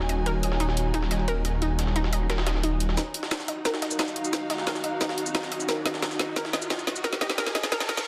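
Futuristic and aggressive, this dark technical drum and bass passage is cut from a longer piece and moves with a straight 4/4 drive. Up front, an overdriven electronic drum kit layers a woody snare, bright hats and a shaker, while a gritty, pitched-up jungle sampler-style kit with a high-tuned snare sits in the background, its sound re-recorded in a large room. A thick, detuned sawtooth bass with chorus and tube saturation holds a low Eb through the opening, then stops at 3.0 seconds as a build-up and drum fill begin and a filter sweep moves across the analog pluck's arpeggios. That pluck is round and bright, carried by chorus and dub echo, over a deep, moody ambient pad and a bowed studio string section with vibrato and a smooth top. The harmony shifts from Ebm to Ebmadd9. A background riser enters at 4.5 seconds and a reverse cymbal arrives at 7.7 seconds, all within a dense, heavily limited modern master with light reverb.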